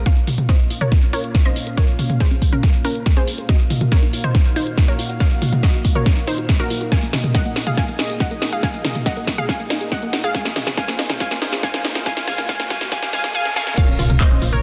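A punchy, up-front electronic kick drives a straight pulse, layered with a house kit of cracking snare, warm hats, handclaps, tambourine, toms and crash cymbal, all in a small room ambience. This soaring, euphoric uplifting trance build-up, cut from a longer piece, is led by a bright, detuned sawtooth pluck melody with delay and a filter sweep, while a second, softer pluck plays arpeggios in the background through tape echo. Beneath them, a thick, chorused unison pad holds sustained chords with a touch of vintage 12-bit sampler grit, and the plucks and pad all pump to the sidechain. Drum fills run through the build. A very quiet riser enters at 9.7 seconds, and an impact lands at 13.8 seconds. A round, dark FM bass sounds briefly at the very start and returns at 13.9 seconds. The mix is dense and heavily limited, with light reverb.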